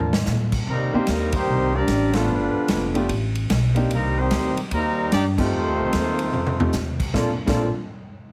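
Joyful and brassy, this short big band swing excerpt in Bb major moves at 148 BPM, with a warm, tightly voiced trumpet section carrying the melody over a veiled, bucket-muted trombone section on a second line. A very quiet, bright trombone section holds chords only in the first 0.6 seconds, while a woody, thumpy pizzicato upright bass and a punchy, airy drum kit drive the swing, with fills at the start and around 6.3 seconds and band accents at 2.1 and 5.3 seconds. A clear grand piano with audible action noise enters at 0.9 seconds, and the whole sits in a wet club reverb with a heavily compressed, radio-like sound.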